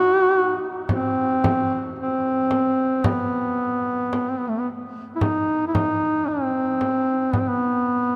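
A mellow duduk carries the melody up front in this solemn, mournful fragment of a Caucasian folk lament, its soft-attacked, scooped notes and smooth top unfolding in a free, rubato feel with a shift in the line at 5.2 seconds. Beneath it, a warm acoustic frame drum with a small-room character enters at 0.9 seconds and falls away at 7.6 seconds, sitting well behind the solo voice, while a long, wet cathedral reverb surrounds the piece.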